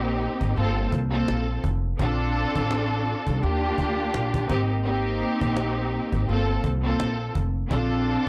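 A dry, gritty hardware recording with transformer saturation carries this warm, confident boom-bap hip-hop excerpt at 84 BPM in 4/4, swung on the sixteenths. Up front, a lush bowed studio string section, filtered at both ends, provides expressive accompaniment with vibrato and portamento over Abmaj9, Gm11, Bbmaj9 and Ebmaj7, above a pizzicato upright bass with a woody, steel-string tone. An acoustic cajon with faint snares enters at 0.2 s and sits in the background in a live room.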